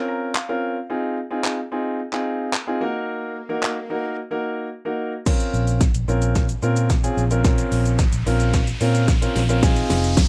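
A warm, open concert grand piano carries the accompaniment in this bittersweet, driving dance-pop excerpt, opening with a short fill and pumping against the sidechain as it moves through Bbmadd9, Fm7 and Ebm chords beneath a punchy, up-front drum kit of layered electronic kick, fat snare, metallic hi-hats, handclaps, shaker and crash. From 5.5 seconds a dark, round, foam-muted vintage electric bass joins with the same pumping, while a drum fill and a background electronic riser build toward the end. A jingly tambourine appears faintly at 10.2 seconds, followed by a shimmering, ethereal pad at 10.3 seconds, all within a rough home-demo mix with light reverb.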